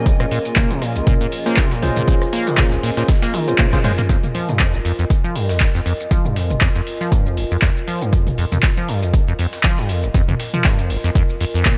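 Raw and hypnotic, this swung acid house excerpt at 119 BPM in F minor is driven by a squelchy, resonant sawtooth acid bass riff with tape echo, a punchy up-front electronic kick and an analog drum machine with metallic hats, claps, rim clicks, shaker and toms, while a very quiet, gritty sampler-style kit adds hi-hat and snare, a smooth detuned analog pad holds sidechain-pumped chords in the background until 4.1 seconds, a nostalgic, warbling lo-fi pad with phaser and chorus floats above throughout, and a barky, overdriven tine electric piano jabs echoing stabs between 1.5 and 3.9 seconds before a drum fill carries the cut into its second section.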